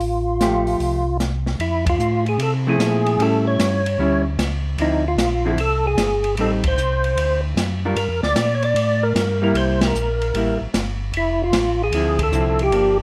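A moderate studio reverb surrounds this brief cut from a longer soul jazz organ trio piece, swinging and bluesy at 151 BPM in F major. A fat, percussive tonewheel organ carries the melody up front through slow rotary speaker and chorus vibrato, while a second, round and mellow organ with audible key click plays the bass line. A clean hollow-body electric guitar comps from 0.4 s, and an acoustic drum kit with dark cymbals and a boomy kick swings from the start as the band lands accents at 1.8, 6.6 and 9.7 s over changes that move from Fmaj7 through A7, Dm9 and Gm7 to C7.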